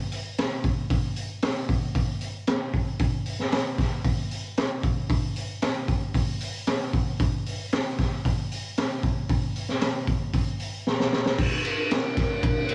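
Gritty, saturated cassette sound with light reverb frames this short cut from a longer rock piece, a raw garage drum kit heard up front in a small room at 114 BPM in a straight 4/4. The acoustic kit carries a dreamy yet brooding mood through its punchy kick, high-tuned snare, hi-hat, ride and crash, with a mid-forward tone and a rolled-off top. A drum fill at 10.9 seconds leads into a new section at 11.4 seconds, and the kit plays on until 12.7 seconds.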